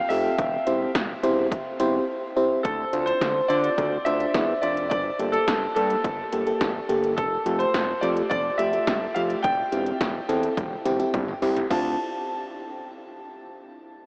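Cool and driving, this synth-pop excerpt sets a clear, polished concert grand piano melody, touched with subtle chorus and analog delay, over a mellow FM electric piano, a fat, detuned sawtooth bass and punchy 80s electronic drums with gated reverb on the snare and toms, all bathed in a huge, dreamy ambient reverb with an AM-radio tint, pausing in a brief silence at 2.1 seconds before a drum fill at 10.6 seconds leads back to a D minor seventh chord.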